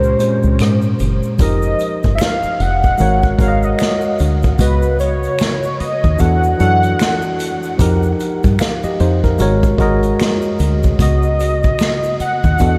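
Swung sixteenths give this smooth, sultry neo-soul R&B excerpt its sway, with a roomy, distant acoustic drum kit played with bundle sticks entering at 0.2 s under a round, foam-muted dub bass, a worn, slightly out-of-tune tine electric piano, a tube shaker and finger snaps in the background, and a velvety, warbling sawtooth synth lead carrying the melody through chorus and diffuse delay, in a dreamy mix soaked in huge reverb.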